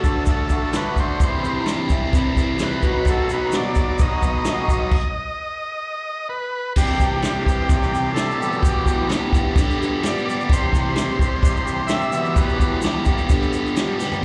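A double-tracked, overdriven electric guitar riff with phaser and slapback echo drives this menacing, gritty garage rock excerpt at 129 BPM, alongside a buzzy combo organ melody with heavy vibrato until 12.8 seconds, a punchy vintage drum kit with dark cymbals, and a grainy egg shaker in the background, all captured as a live club gig through the venue's PA, with a stop from 4.9 to 6.8 seconds before the second section and a closing drum fill at 14.0 seconds.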